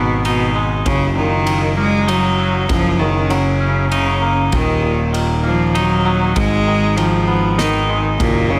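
In a straight three-beat metre, this melancholic, brooding post-rock fragment sets a biting, up-front bowed cello melody with light vibrato over clean, twangy fingered electric guitar arpeggios, both carrying slapback echo, while a growly, bright picked electric bass anchors the low end and a loose acoustic drum kit with a fat snare, punchy kick and dark ride cymbal joins at 0.2 seconds in a pumping small room with light reverb.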